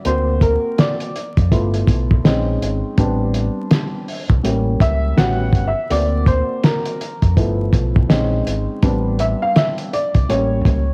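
This jazz-hop excerpt has a cool, nocturnal mood, set in 4/4 with a swung sixteenth-note feel. An upright piano takes the solo from 0.0 s, moving through extended jazz chords such as D7b13, G13, Bbm11 and Am11. Its sound is woody and slightly detuned, with audible action noise and long sustain, close and intimate with a cassette-tape tint. A fingered electric bass enters at 0.1 s with a round, amped tone. The cloth-damped, thuddy drum kit of hi-hat, kick and snare sits up front, its fat snare and tight kick made gritty and muffled by cassette saturation and a rolled-off top. Light small-room reverb and vinyl crackle give this home cassette recording its late-night character.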